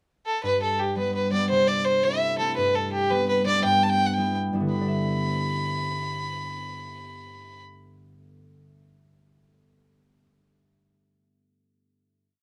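A single bowed fiddle leads this short, cheerful Celtic folk piece, its airy, reedy gut-string tone carrying a motif-based melody in sentence-like phrases from a brief pickup at 0.3 seconds. Up front beside it, a bright, ringing concert harp is fingerpicked with bass notes and chord figures that keep a lively 6/8 pulse at 112 BPM in G major, moving through G, C6, G and G6. After one short section, the pair settles on a final chord at 4.7 seconds, and the harp rings on in a moderate studio reverb until 8.5 seconds.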